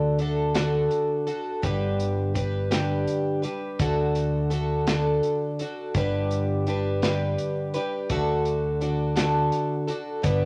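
Folk rock with a heartland rock lean, this open-road, jangly excerpt in D major rolls at 56 BPM in a straight 6/8. A picked, plugged-in twelve-string acoustic guitar sits up front with a woody, boxy, shimmering octave-doubled tone on old strings, picking its way through D and G. It plays alongside a round, amped electric bass and a natural country drum kit with a punchy kick and a medium-tuned snare, all set in a moderate large studio reverb.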